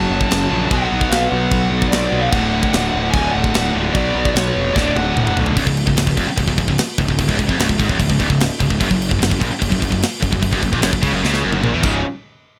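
A straight 4/4 pulse drives this aggressive, heavy metal excerpt at 148 BPM, with a tight, up-front acoustic drum kit hitting kick, medium-tuned snare, toms and bright china and crash cymbals in a studio room. A dark, high-gain lead guitar carries the melody high above the band until it drops out at 5.3 seconds, over a first section that moves through F#m, B5, D and Bm. Beneath it, two picked rhythm guitars, one heavy and one scooped, play a low riff in the background the whole way. A very quiet, double-tracked overdriven guitar adds a riff in the same low range, pausing in the second section before returning at 8.8 seconds. A growly, fuzz-laden electric bass, picked and overdriven, anchors the low end. Drum fills close each section, the last one starting at 11.2 seconds, and the dry, close sound keeps the attack raw and immediate.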